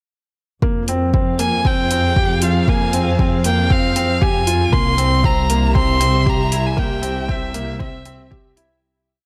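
A felt-muted upright piano ostinato, a dark, woody string section sustaining chords in the background through a low-pass filter, a lush bowed double bass section holding sidechain-pumped roots and an overdriven four-on-the-floor kick open this cinematic, moving piano-and-strings electronica piece in F harmonic minor at 117 BPM together. A restrained closed hi-hat follows just after, and from 1.4 seconds an up-front, nasal violin sings arching motifs with vibrato and portamento, all in light reverb as the build-up moves from Fmadd9 to C and fades out from 6.1 seconds.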